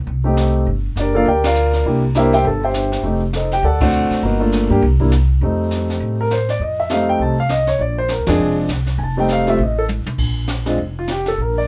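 A brisk swung 4/4 at 202 BPM drives this sophisticated jazz piano trio passage in F mixolydian, cut from a longer piece, with band accents landing at 1.4, 3.8 and 8.2 seconds and a drum fill at 9.9 seconds. The woody, growly pizzicato upright bass sits up front, while the airy brush kit brings dark cymbals, a high-tuned snare and a boomy kick. Over them, a warm, intimate concert grand carries the melody with audible action noise and long sustain, all set in light reverb across two repeated sections.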